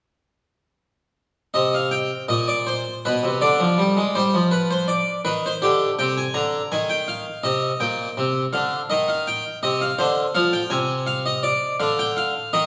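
In a rubato triple metre, this flowing, solemn baroque-style suite movement, cut from a longer piece, features a solo French-style harpsichord with three sets of strings, plucked and brilliant, playing from 1.5 to 12.7 seconds and sitting up front in a wet recital-hall reverb.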